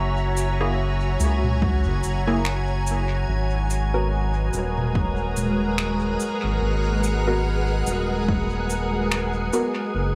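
Deep and spacious, this ambient dub fragment at 72 BPM in G# minor, moving from F#7 to G#m9 over a lightly swung 4/4, sets a soft, pure organ-like pad with ensemble chorus and built-in reverb over a round, dark analog bass warmed by tube saturation, while a glassy texture of drifting overtones sits in the background, muted sawtooth chord stabs with chorus and dub echo arrive at 0.6 s, a tape-toned organic electronic kit of cabasa, finger snaps and toms carries its own dub echo, and a punchy overdriven electronic kick runs from 1.6 s to 8.5 s, in an echo-heavy mix with small room ambience.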